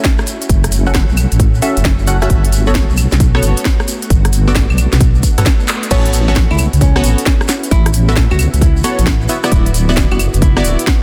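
Opening on a punchy electronic kick, a house kit with cracking soft-clipped snare, crisp hats, claves, handclaps, rim clicks and crash, a bright chorused chord stab under a filter sweep with tape echo, and a silky string machine pumping softly in the background, this bouncy, soulful 133 BPM two-step garage excerpt in A mixolydian soon adds a grainy tube shaker and a deep, dark wobble bass up front, then after a drum fill and band accent at 5.7 seconds drops at 5.9 seconds into a section where a fingerpicked nylon-string guitar enters with echoed classical lines, all within light digital ambience and a dense, heavily limited master.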